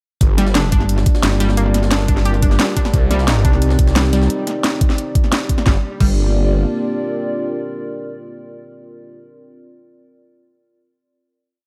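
Aggressive and dark technical drum and bass that opens on a drop at 0.2 seconds, with an overdriven, knocking electronic kick up front and a tight, overdriven kit of cracking snares, bright hats and crash over a very quiet, gritty, pitched-up jungle breakbeat loop, while a swirling, phased, detuned saw bass in chopped phrases and a metallic, wobbling FM bass carry the low end, an analog pluck repeats a round 16-step arpeggio through analog delay, and a deep, moody analog pad and a lo-fi, warbling tape-like pad pump beneath it all before the pads sustain a final G minor chord from 5.7 seconds.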